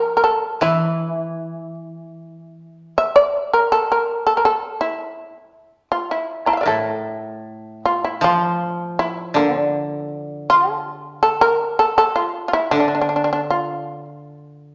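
In a free, rubato 2/4, this calm and austere passage of Japanese traditional chamber music sets a powerful, buzzing, percussive plectrum-plucked shamisen melody up front over a low, woody fingerpicked koto accompaniment that falls away at 2.9 seconds and returns at 6.7 seconds, while the shamisen plays through to 14.0 seconds, all within the resonant reverb of a recital hall.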